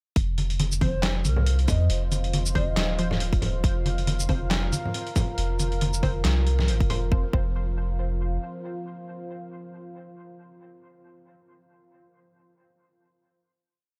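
Deep dubstep with a dark, heavy half-time feel, where a tight, up-front electronic kick and a gritty, pitched-down sampler kit of snare, hats, shaker and claps sit beside echoing hand-played congas and a round sub bass with long gliding notes, while muted, detuned chord stabs with phaser and dub echo, a distant, airy shakuhachi from 0.8 to 3.2 seconds, and a moody sawtooth pad carry the piece to a final chord from 7.1 seconds.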